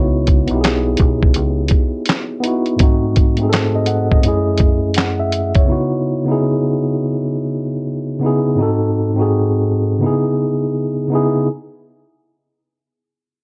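A swung 16th-note groove at 83 BPM in 4/4 sets a hazy, melancholic lo-fi hip hop mood in C# minor, in a short cut from a longer piece. A mellow tine electric piano carries the accompaniment throughout, sitting up front with a clean, warm tone heard through its built-in speakers and softened by cassette tape colouring and a low-pass filter. Its chords move through C#m11, G#7b9 and F#m9, then return to C#m11 and pass through G#7b9 once more before settling on C#m9. A deep, round dub bass, fingered and dark, sounds only briefly at the very start, stopping at 1.7 seconds. The sampler-style drum kit enters at 0.3 seconds and plays until 5.7 seconds, compressed, pitched down and muffled, with a thumpy kick, a medium-tuned snare, hi-hat and handclaps placed up front. A moderate studio reverb and an overall tape sheen give the whole piece a dusty, intimate feel.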